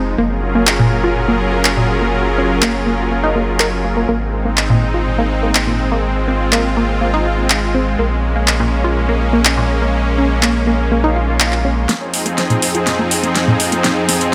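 A lush, bright supersaw pad and a thick, saturated sub bass open this expansive, driving progressive house excerpt at 123 BPM in Bb minor, soon joined by a punchy, detuned unison pluck arpeggio trailing tape echo and an up-front deep house kit of handclaps, metallic high-passed hats and a fat high-passed snare, moving through Gbmaj7, Ab and Bbm7 in light reverb until a faint electronic swell in the background at 11.0 s gives way, as the bass stops at 11.9 s, to a build-up on Fm7 with a drum fill and a filter sweep on the pluck.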